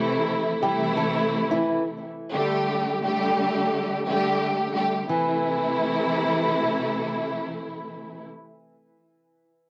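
A dry, gritty cassette sound with light reverb frames this moody, tough hip hop fragment in A minor at 87 BPM, with a swung 16th-note feel. A lush, bowed string section, expressive with vibrato and portamento, carries the accompaniment up front until 8.2 seconds. Alongside it, a small, dark fingerpicked nylon-string guitar plays the melody through tape echo until 7.1 seconds, while the harmony moves from Am to Gsus2 and returns to Am as the second section arrives at 5.1 seconds.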